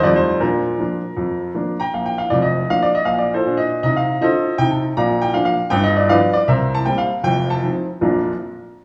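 Set in the lush reverb of a large studio, with a live-in-the-room feel, this short excerpt of swinging, exuberant stride jazz features a solo grand piano that sounds clear and up front. The piano plays alone from 0.0 to 8.3 seconds, spanning from deep bass notes to bright upper registers over a swung four-beat pulse. It moves through a harmony that opens on an F9, touches G7, and comes to rest on Bb at 8.0 seconds.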